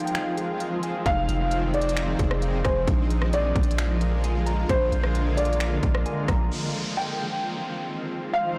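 Spacious and hazy, this short atmospheric cloud-rap clip in F dorian moves at 132 BPM with a half-time feel. A felt-muted upright piano with a soft, intimate tone carries the melody through digital delay over a shimmering, ethereal pad of sustained chords, with a clean, dark electric guitar playing delayed arpeggios in the background. A trap kit of finger snaps, crisp hats, rim clicks and a hard-clipped kick sits up front alongside a deep, sine-like 808 bass entering at 1.1 seconds, and after the drums drop out a downlifter sweeps in at 6.5 seconds, all inside a recital hall reverb and a blown-out, overdriven mix.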